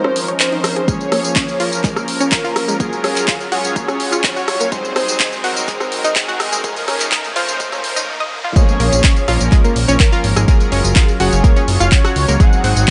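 Lightly reverberant, this driving, expansive progressive house cut opens on a build-up where a very quiet riser and filter sweeps on a round, detuned analog pluck arpeggio and airy soft supersaw stabs frame a thick unison sawtooth lead with vibrato, all three synths pumping under dub echo, over a deep house kit of dark hats, handclaps, rim click and tambourine, joined by a deep electronic kick at 0.9 seconds, before the drop at 8.6 seconds brings in a fat, saturated analog bass at 8.8 seconds.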